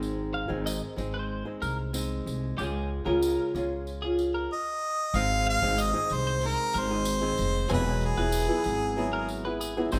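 Sunny and heartfelt, this acoustic pop excerpt moves at a straight 94 BPM in 4/4 over Ab, Db and Eadd9 chords, with fingerpicked nylon-string guitar, woody pizzicato upright bass on gut strings and a jingly tambourine from the start, a clean, compressed twelve-string electric guitar adding picked arpeggios from 0.3 seconds, and an up-front harmonica with light vibrato and scooped notes carrying the melody from 4.5 to 9.3 seconds, all played live together in a large studio with moderate reverb.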